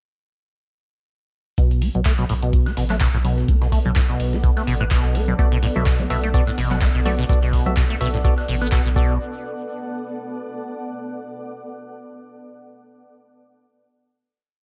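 The squelchy, resonant sawtooth acid bass drives this raw, trippy acid house piece in B minor at 126 BPM, its filter-swept 7-step line drifting against the bar over a deep four-on-the-floor kick, a thick saturated sub bass, a booming analog drum machine with metallic hats, clap, woodblock and conga, a gritty looped breakbeat kit, a grainy hand-played shaker, a cloudy granular pad entering at 2.4 seconds, and hollow organ stabs from 5.4 seconds, the two basses and the pad pumping in a dark production until the groove gives way to a final chord at 9.2 seconds.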